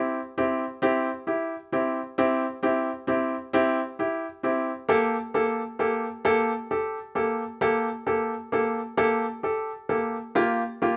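Pop in a slow 6/8, this excerpt carries a melancholic, dramatic mood from a lone upright piano playing from 0.0 to 11.0 seconds. The instrument sounds brilliant and woody, with a polished, up-front presence and a short sustain that lets each chord decay quickly. It stays in a compact middle register, moving from a C chord through a darker Gmadd9 over Bb around 4.9 seconds before settling on Gm7 near 10.4 seconds. The shift toward minor colour deepens the melancholic, theatrical tone. A moderate studio reverb gives the piano a sense of a real room around it, as if captured live.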